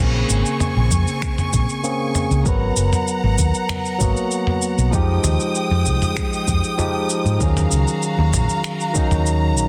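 The fingered hollow-body electric bass stands out most in this short cut from a longer sunset chillout piece, its dark, round, punchy amped tone sitting lowest and loudest from the first second. A barky, bell-like tine electric piano plays accompaniment up front through a combo amp, softened by a low-pass filter and trailed by tape echo, while a lush, woody string section holds close, bowed chords with vibrato. At 97 BPM in a straight 4/4, the harmony moves through Bbm9, Abm9, Fm9 and Ebm9 in Bb minor, giving a warm, smooth mood. A gritty, compressed sampler-style soul kit joins at 0.3 seconds with cabasa, finger snaps and toms, its snare roughened by soft clipping, and a soft electronic kick sits in the background from 0.9 to 9.1 seconds. Light reverb and digital ambience surround the parts, and the master is dense and heavily limited.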